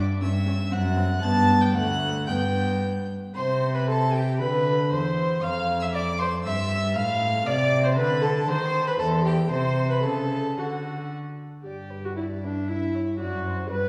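Classical-period string quartet movement in G major, quick at 116 BPM in 2/4 with a rubato, graceful and lively feel, cut from a longer piece and heard from further back in a wet recital hall. The first violin carries the melody up to A6 over the second violin's line, the viola's smooth-topped accompaniment and the cello's nasal bass, all four bowed by single players with reedy gut-string period tone, the violins adding light vibrato. The opening material returns at 11.7 seconds after a middle section that briefly touches a C minor-major seventh over E-flat.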